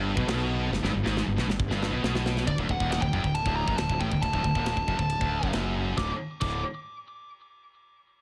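A light reverb sits over this dark, epic heavy metal excerpt, cut from a longer piece and driving along at 137 BPM in a straight 4/4. A growly, fuzz-soaked fingered bass sits up front with overdrive, beneath two picked high-gain rhythm guitars: one heavy and bright, the other scooped and tucked in the background. A very quiet, double-tracked and compressed distorted guitar adds to the opening riff before dropping out at 2.5 seconds. An acoustic drum kit with a tight kick, a medium-tuned snare and glittering crash and ride cymbals plays a fill from 0.7 seconds. At 2.5 seconds the harmony moves from G to D, and an up-front, dark-toned lead guitar takes the melody with distortion and delay, while at 6 seconds the harmony settles on a D5 power chord.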